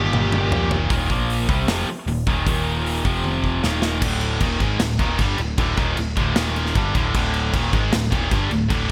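A drum fill on a big, up-front rock kit opens this driving, heavy hard rock excerpt, with bright cymbals, a medium-tuned snare and a boomy kick, all treated with gated reverb. A dark, overdriven lead guitar sounds a single G4 note through digital delay and falls silent by 0.7 seconds. Two bright, overdriven electric guitars pick the main riff over Eb5, Bb5 and F5 power chords, one of them set back in the mix, while a punchy, amped picked bass holds down the low end. A very quiet, double-tracked high-gain guitar thickens the opening, drops out, then returns at 4.0 seconds, just after a second drum fill leads in, as the riff settles around D5 with brief shifts to Eb5. Light, small-room reverb and a glossy 1980s-style digital production give the whole track a punchy, polished sheen.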